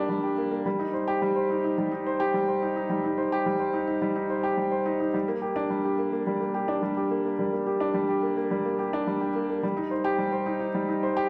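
A dark grand piano, mellow and intimate with audible action noise and long sustain, plays alone up front through tape echo in a wet recital hall for this hypnotic, cinematic 11.3-second electronica fragment at 107 BPM in 4/4, moving between G3 and C5.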